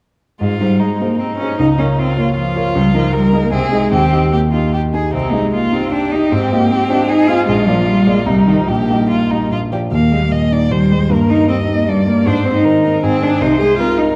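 A dark, reverberant recital-hall sound frames this lively, cheerful passage from a quick classical-period movement for piano trio, moving at 153 BPM in 3/4 with a rubato feel and shifting from Ab major to Eb major at 5.1 s. A rich, expressive violin carries the melody with vibrato and portamento, while a smooth, even cello supplies a second line with light vibrato, and an up-front, natural-sounding baby grand piano provides the accompaniment. All three players sound together from 0.4 s to 14.2 s, the cello sitting prominently in the balance.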